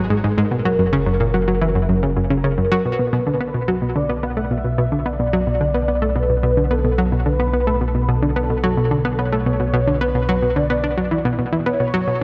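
An excerpt with a cassette-tape grain and a moderate plate reverb with a 3.0-second tail, this is ambient, sequencer-driven space music at 109 BPM in 4/4 with a straight feel, centred on B minor and tuned to A4 = 441 Hz. The mood is hypnotic and expansive. Up front, a bright analog pluck built from sawtooth and square waves with a sub octave plays the riff from 0.0 to 12.2 seconds, its fast attack and short decay coloured by chorus and tape echo. Beneath it, a fat, thick analog bass of detuned, saturated sawtooths holds sustained, evolving notes between F#1 and B1. A mellow, horn-like sawtooth lead carries the melody between G#4 and F#5 with a soft attack, vibrato, phaser, ensemble chorus and tape echo. The harmony moves from G#m to F# in the opening passage before settling on Bm as the second section begins at 2.9 seconds.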